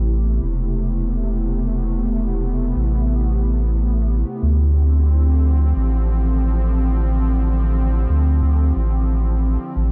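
Set at a relaxed 90 BPM in 4/4, with a light swing on the sixteenths, this ambient dub passage moves at an unhurried, meditative pace. A round, sine-like sub bass holds the low end throughout, sitting up front with a quick attack and sustained, deep tones. Above it, an airy, breathy pad carries sustained chords in the middle register, its slow attack and long release blurred by detuning, a faint noise layer and chorus, giving it a soft, slightly nasal shimmer further back in the mix. The harmony rests on Am9 before shifting to Dm11 at 4.4 seconds, and both parts play for the full 9.9 seconds of this short cut from a longer piece. A digital ambience surrounds the sound, lending the whole a spacious, suspended calm.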